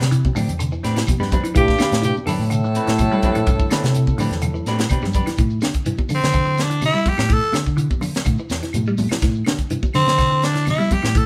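A raspy, gritty tenor saxophone sits up front and carries the solo from 6.1 s, its close-miked tone edgy with scooped notes and vibrato. This is an intense, funky afrobeat excerpt in A minor at 125 BPM in a straight 4/4, moving from Am11 to A7sus4 at 5.4 s after a drum fill. Earlier, from 1.6 s, a clear alto saxophone with light vibrato takes the melody over a muted trombone section playing a soft, veiled second line in cup mutes. Underneath, a clean picked electric guitar plays arpeggios through a phaser, a dark hollow-body guitar adds brief stabs in the opening half, and a round, amped fingered bass holds the low end. A tight, polished funk kit with a high-tuned snare drives the groove, while grainy shekere, ringing high-tuned congas and very quiet woody claves sit further back. The band plays live in one room with moderate studio reverb.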